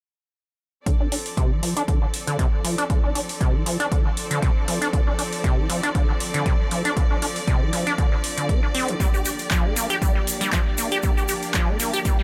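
A lightly swung 4/4 groove at 118 BPM drives this raw, gritty acid house excerpt in D minor, where a punchy, tape-warm electronic kick and a booming analog drum machine with metallic hi-hats and handclaps sit under a squelchy, resonant sawtooth acid bass riff that carries overdrive, lush chorus, digital delay, a filter sweep and sidechain pumping, while a clear, bowed symphonic string section holds pumping Dm7 chords, a very quiet, blurred granular cloud pad drifts in at 2.1 seconds, and a grainy tube shaker joins in the background at 9.0 seconds as the harmony moves to Gm7, all set in light digital ambience.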